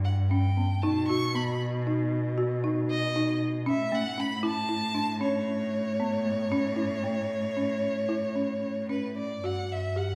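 Heard from further back in a reverberant recital hall, this hopeful, shimmering excerpt of contemporary chamber music moves in an uneven 11/8 at 231 eighth-note beats per minute. A rich bowed violin carries the melody with smooth vibrato, while a single cello holds the bass with a soft attack and expressive portamento. From 0.3 s a woody, rustic folk marimba adds arpeggios, and the harmony moves through G, B and A before settling on Emadd9/G at 9.4 s.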